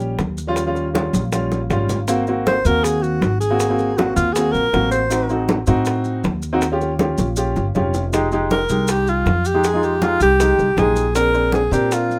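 A clear alto saxophone leads this sunny, danceable Afro-Cuban jazz excerpt at 159 BPM in Eb mixolydian, stepping up front with vibrato and scooped notes in two solo phrases from 2.5 seconds and again from 8.5 seconds. Beneath it, a woody upright piano and a plucked upright bass hold steady accompaniment over chords moving from Eb9 through Ab9 and Adim7 to Fm7 and Bb9. Ringing congas and tight high-tuned bongos keep the percussion bubbling in the background, while grainy maracas sit close and dry, with light reverb around the whole.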